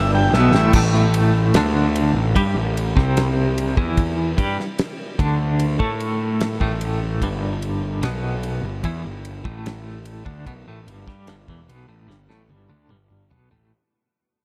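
A slow, straight 4/4 pulse carries this hazy, trippy psychedelic rock passage, cut from a longer piece. A buzzy vintage combo organ with light vibrato and analog delay sounds a brief, clean melody that ends at 0.7 seconds, just as a damped 70s drum kit finishes the fill it began at 0.3 seconds. Throughout, a twelve-string electric guitar plays a bright, twangy, compressed riff up front with tremolo, over a fuzz-laden, overdriven electric bass that also sits up front. The dry acoustic kit, with its fat snare and tight kick, keeps time across kick, snare, crash, ride and toms, and breaks into another fill at 12.1 seconds. The music begins fading almost at once, and a huge ambient reverb soaks the mix in a dreamy wash.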